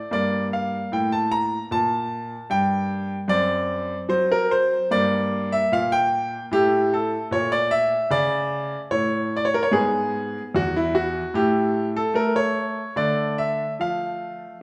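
A bright, brilliant grand piano plays alone, up front in a recital hall whose reverb lingers, in this baroque-style suite movement in D minor at an unhurried 74 BPM with a flexible rubato feel. The mood is introspective and solemn as the harmony moves from G minor through D7 and A major, pauses on an unaccompanied passage at 11.3 seconds, and settles on D minor at 13.0 seconds. This short passage is cut from a longer piece.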